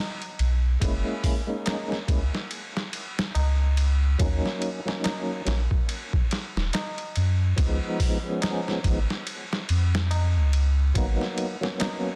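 Dry and dense with a heavily limited modern master, this brooding, cinematic trip hop fragment is cut from a longer piece and rides a swung sixteenth-note feel on a gritty, pitched-down, sampler-style boom bap kit of thumpy kick, medium-tuned snare, hi-hat and ride, sitting up front with a tape-warmed small-room character. A deep, round dub sub bass holds the low end, while a fat tonewheel organ enters at 0.8 s with key click, light overdrive, chorus vibrato, slow rotary speaker, tremolo and tape echo over chords moving from a rootless F#7 through D#m7 and C#7 to G#m7. A high-tuned, ringing acoustic tabla joins in the background from 1.7 s.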